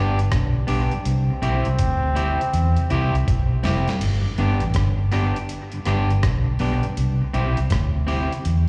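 A bright, distant trombone, a dark, slightly broken-up electric guitar with tape and slapback echo, a mellow tonewheel organ with key click and rotary speaker, and a round, punchy foam-muted bass open this sunny, uplifting roots reggae excerpt with a swung feel, the trombone dropping out at 3.6 seconds, while a gritty, overdriven sampler-style drum kit with a thumpy kick and rim click plays a fill from 1.1 to 4.0 seconds, the whole sound captured as a live gig through the venue's PA in recital hall reverb.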